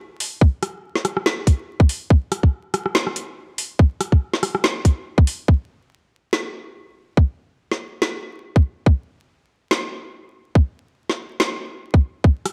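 A half-time groove at 142 BPM in 4/4 drives this dark, cavernous dubstep excerpt, its 16ths swung at 56% so the beat leans with a loose, shuffling gait. A tight electronic kick sits up front in the mix, entering at 0.4 s and hitting noticeably louder than the rest of the kit. Just before it, at 0.2 s, a garage-style drum kit comes in with metallic hi-hats, a rim click and a woody snare, all layered and produced with an electronic edge. The pattern shifts into a new section at 5.5 s, carrying the same drum-only texture forward until the cut. The production is dusky and rounded, dressed in light reverb and a bed of vinyl crackle that adds a worn, underground grain.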